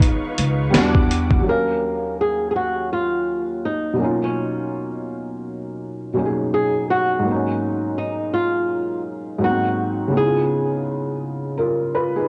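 This nostalgic, melancholic lo-fi hip hop excerpt in Eb minor opens at a relaxed 83 BPM with a swung 16th feel. A fingerpicked flamenco guitar carries the melody, a soft, felt-muted upright piano plays the accompaniment with its action noise audible, and a vintage string machine cello pad adds sustained sawtooth chords with a warbling ensemble chorus. Beneath them a compressed, pitched-down sampler drum kit thumps with a muffled kick and a medium-tuned snare, and a woody, dark pizzicato upright bass on gut strings joins at 0.4 s. Drums, bass and strings fall away at 1.4 s, leaving the guitar and the intimate, mellow piano up front to drift through Ebm9, Bmaj9#11, Ab7sus4 and Ab9 before settling on Db9. Cassette tape colours the drums, guitar and piano, and a low-pass filter dulls the guitar, piano and pad, all inside a moderate spring reverb with a homemade cassette character. The guitar stops at 10.8 s, and the piano lingers alone to close.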